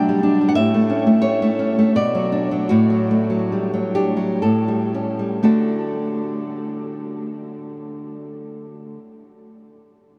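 A warm, fingerpicked nylon-string guitar sits up front in this romantic solo classical piece in D major, tuned to A4 = 441 Hz, moving in a rubato 3/4 between 55 and 95 BPM with a nostalgic, sunny mood. It spans A2 to G5, easing through G/B, A, Bm, D/A and A7 as it slows over the opening 5.4 seconds before settling on D, and it plays until 9.0 seconds. A huge, wet ambient reverb with an 8.2-second tail, heard from further back in the room, surrounds this passage cut from a longer piece.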